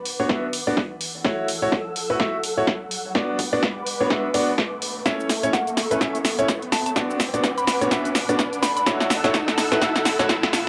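Soulful, bittersweet piano house at 126 BPM in B minor, this short cut from a longer piece is one long build-up, where a clear, up-front grand piano riff pumps through a low-pass filter and analog delay over a punchy, overdriven analog drum machine with snare, hi-hat and shaker, a background overdriven kick drum, a silky sawtooth string pad under a filter sweep, and a background riser, while a woody, round FM pluck with chorus and phaser carries a melody from 5.1 to 8.8 seconds over chords moving between Bm, F#m7/A and A, all in a wet small room with a cassette home-recording character.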